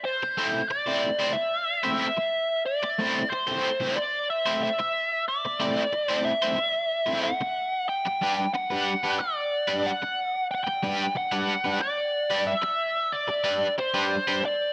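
A light reverb and digital ambience frame this mysterious, trippy rock passage in A dorian, moving at 92 BPM in a straight 4/4 and cut from a longer piece. An up-front, double-tracked semi-hollow electric guitar plays a picked, overdriven riff through harmonic tremolo from 0.2 seconds. Over it, a biting, bright lead guitar carries the melody with wah, overdrive and tape echo, as the harmony shifts from A minor to G at 7.9 seconds.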